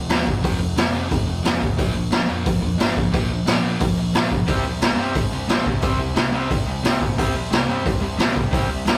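A rough rehearsal-room recording with light reverb, this short excerpt cut from a longer punk rock piece is angry and aggressive, driving at 178 BPM in a straight 4/4 with A4 tuned to 441 Hz. Up front sits a raw garage drum kit of hi-hat, boomy kick and medium-tuned snare, gritty and saturated with a mid-forward, rolled-off top that feels confined to a small room. A sludgy distorted guitar with a warm overdrive carries the riff from the start, ranging from F2 to C4 over power chords that move from F5 to Bb5 at 1.8 seconds. Beneath it, an overdriven picked electric bass sits in the background, growly, punchy and bright, reaching down to F1. At 4.5 seconds a tight, bright distorted guitar joins with a second riff between C3 and C4 as the harmony lands on C5 and holds to the end at 9.0 seconds.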